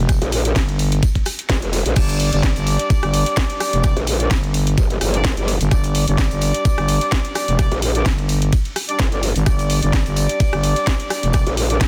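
Aggressive and swaggering, this bass house excerpt struts at 128 BPM in G minor with a light 16th-note swing. Two growling basses sit up front low in the register: a thick FM bass with overdrive, and a wobbling, formant-filtered growl bass thickened by chorus and tube saturation, both pumping against the sidechain. Alongside them an overdriven, up-front electronic kick knocks hard, layered with a house kit of cracking snare, bright hats, rim clicks, crash and ride, while a very quiet acoustic fusion kit adds a high-tuned snare, hi-hat and tambourine from a small, pumping room. From 2.0 seconds a warm pop-style horn section enters with smooth-topped stabs, light vibrato and delay, also ducking with the sidechain. The sound is a dense, heavily limited modern master.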